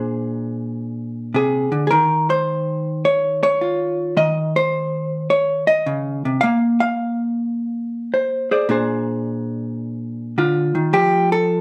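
A vintage hollow-body electric jazz guitar plays alone from the first moment, its picked tone dark, clean and compressed and set up front, moving through Bb9, Ebsus2 and Fadd9 chords in Bb mixolydian. This playful, relaxed solo jazz runs at 106 BPM in 4/4 with a swung eighth-note feel, spanning Bb2 to F5. Moderate studio reverb frames a live single-room sound in this brief cut from a longer piece, which ends at 11.6 seconds.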